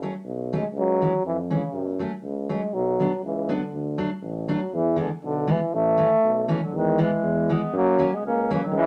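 A lightly swung 2/4 pulse drives this jolly, bouncy alpine folk dance band excerpt, cut from a longer piece. A full-bodied fingerpicked jumbo acoustic guitar and a roomy tuba with light vibrato lay down the accompaniment and bass from the start, while an up-front euphonium, also with light vibrato, carries the classical-style melody from 0.6 s. A mellow, smooth-topped clarinet joins with a second line at 6.5 s, just before the tune moves into a new section at 6.7 s, all set in a moderate studio reverb.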